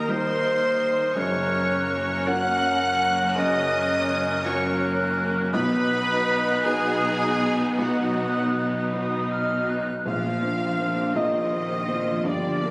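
In a slow, rubato 6/8 at 54 BPM with uneven beats, this moving, uplifting cinematic orchestral cue opens with a rich, vibrato-laden violin section carrying the melody high above a clear, distant second violin line, a solo clarinet that drops out at 8.9 s, an airy silver flute that drops out at 10.1 s, and a gently vibrato-tinged oboe. Beneath them, a soft, felt-muted upright piano and focused violas accompany, a mellow French horn section holds sustained chords, and a barely audible concert harp rings out fingerpicked arpeggios, while smooth, close cellos and a studio double bass section anchor the bass. The chords move from Eb through Gb and B before settling on Bbadd9 as a brief new section begins at 10.1 s, all set in a moderate scoring-stage reverb but captured on a phone with club-like ambience and compression.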